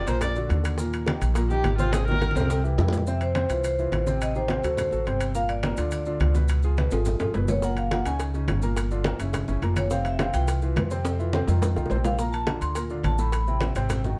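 Sunny and sophisticated, this Afro-Cuban jazz passage opens with a smooth, focused bowed viola solo that gives way at 3.1 seconds to a metallic, ringing vibraphone lead with slow motor vibrato, over an intimate concert grand piano with audible action noise, a woody pizzicato upright bass up front, ringing metal-shell timbales, low-tuned background congas, grainy maracas, and tight, high-tuned bongos that drop out and return at 7.6 seconds, all in light reverb.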